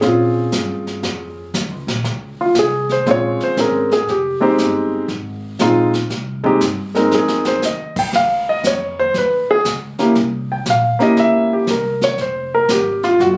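A swung 4/4 groove at 118 BPM, with eighth notes swung at 67%, carries this moody, swinging jazz piano trio passage in F minor, tuned to A4 = 441 Hz and taken from a longer piece. A warm concert grand piano sits up front and solos across the full 13.4 seconds, its melody ranging from Ab3 to G5 with deep bass and short sustain. Beneath it, an upright bass plucks a woody, dark line between F1 and Bb2 on steel strings. A jazz kit played with brushes adds a brushed snare, dark cymbals, hi-hat, a high-tuned snare and a punchy kick, with a brief drum fill from 7.1 to 7.6 seconds. The harmony moves from Bbm7 to Fm7, then Db and C7b9, before settling on Fm, and the sound is that of a phone recording in a club room with light reverb.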